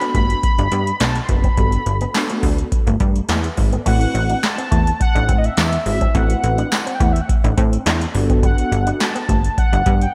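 A booming, overdriven analog drum machine opens this slick, funky early-eighties boogie funk excerpt at 105 BPM in A dorian. Its deep kick and crisp snare sit up front alongside a velvety, detuned sawtooth synth lead carrying the melody with chorus, vibrato and tape echo, round synth brass chords, and a dark, clean electric guitar riff through an envelope filter in the background. A plucky, punchy analog bass with ring modulation joins almost immediately, and a jingly tambourine enters at 1.0 s, while the harmony moves from Gmaj7 to Am69 at 3.9 s before returning to Gmaj7, the mix sitting in a lush hall reverb that gives a big arena sound.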